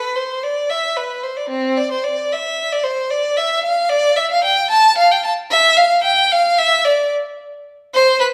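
Serene and dance-like, this brief classical passage, cut from a longer piece, is a baroque-style suite movement for a single unaccompanied violin in a lilting 6/8 with a flexible, rubato feel. The solo violin plays throughout the 8.3 seconds, its bowed tone rich, smooth and even, with vibrato, sitting up front yet touched by a slightly distant quality. A moderate recital-hall reverb, with a 1.4 s decay, surrounds the line.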